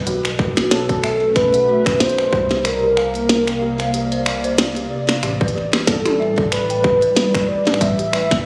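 Glitchy and intricate, this short IDM fragment moves at 93 BPM in 4/4 with a light swing on the sixteenths, drifting through suspended ninth chords. A hollow, flute-like pad holds sustained chords that warble through ensemble chorus, pumping under sidechain and glistening with shimmer reverb, while a metallic FM bass lays down low, quickly decaying notes beneath it. A dark, detuned synth bell spins eerie, inharmonic arpeggios smeared by chorus, tape echo and shimmer. Up front, a tape-warmed, glitchy kit of finger snaps, clicky hats, a tiny snare and toms sits with a tight electronic kick, which falls away between 2.6 and 5.2 seconds. Over it all floats a velvety, smooth synth lead with vibrato, roughened by vintage 12-bit sampler grit and trailed by delay, all set in a lush hall reverb and captured on a phone in the room.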